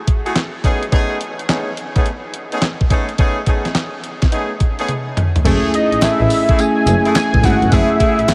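New jack swing R&B at 106 BPM in F# dorian, this punchy, slick fragment opens on a thumpy, up-front 12-bit drum machine with a fat snare, claps, tambourine and toms, while a tight, jazz-style horn section with light vibrato punches out stabs through an analog delay over F#m9 and Amaj9#11 chords. After a drum fill at 4.9 seconds, a bell-like tine electric piano and a dark, bowed double bass enter at 5.5 seconds, joined at 5.7 seconds by a fat, detuned sawtooth lead with chorus and a filter sweep. A barely audible, hollow group handclap slips in at 6.0 seconds, and the whole dreamy mix is soaked in a huge ambient reverb.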